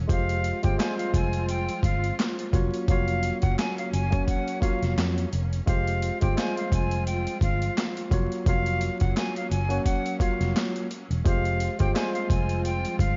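A moody, gritty boom-bap hip-hop excerpt with a swung sixteenth-note feel, built on a sampler-style drum kit that sits up front with a thumpy kick, high-tuned snare, hi-hat and handclaps, pitched down and compressed, with the sound of a large room, over a dark, round, foam-muted electric bass. A worn, slightly out-of-tune tine electric piano, lightly overdriven and carrying cassette-tape character, plays the accompaniment through alternating Fmadd9 and Gbmaj7/F chords, while a reedy silver concert flute carries a tongued melody with vibrato and delay from 0.1 seconds and a lush bowed string section holds chords in the background. The mix has little reverb, vinyl crackle and a dulled top end.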